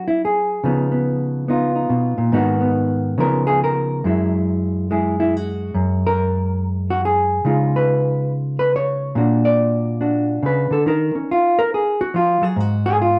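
Solo jazz with a relaxed, swinging feel, this short section cut from a longer piece features a clean, dark hollow-body electric guitar played fingered and up front through the whole 13.2 seconds, moving through chords like Db9, Gb9 and Bbaug in a moderate large-studio reverb with a dark, warm production.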